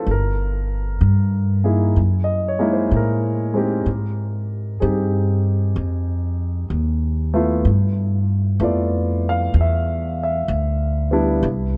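Jazz ballad at 63 BPM in 4/4 with a swung eighth-note feel, intimate and late-night in mood, moving through Gm6, F#13, Fm7 and G13. A warm concert grand piano with a deep low end plays accompaniment close up, while a pizzicato upright bass with gut strings sits slightly louder and just as near, its woody, thumpy tone carrying the low line until 11.8 s. Light reverb and a dark, warm production keep the short extract intimate and close.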